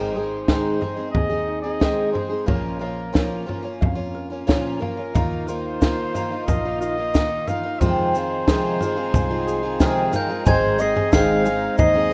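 Indie folk excerpt at 90 BPM in Ab major, uplifting and nostalgic, where a mellow trumpet with analog delay carries the melody over a shimmering, octave-doubled twelve-string acoustic guitar, light fingerpicked ukulele arpeggios, a round, foam-muted electric bass and a punchy, up-front cocktail drum kit with a high-tuned snare, before bowed chamber strings join at 5.1 seconds and a grainy tube shaker at 5.2 seconds, a bell-like glockenspiel enters at 9.8 seconds, and a felt-muted upright piano slips in very quietly at 10.5 seconds, all in a rough home-demo mix with light studio reverb.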